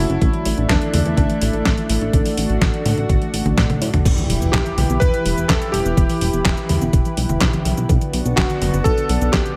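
A light reverb gives this sunny, romantic italo disco excerpt at 125 BPM its gloss, with a clangy, clear electric grand piano carrying the melody through tape echo over a lush, thick unison pad of sustained chorused chords and a very quiet, lo-fi warbling pluck tracing arpeggios. Underneath, a glossy chorused synth bass with a fast attack rides beside a thumpy electronic kick and an up-front, detuned 8-bit drum machine whose snare, handclaps, hi-hat, congas, cabasa, toms and crash cymbal sit in gated reverb. The harmony moves from Asus4 to Em at 4.1 seconds, just after a drum fill, where a faint electronic impact sounds, before settling on Bm at 7.9 seconds.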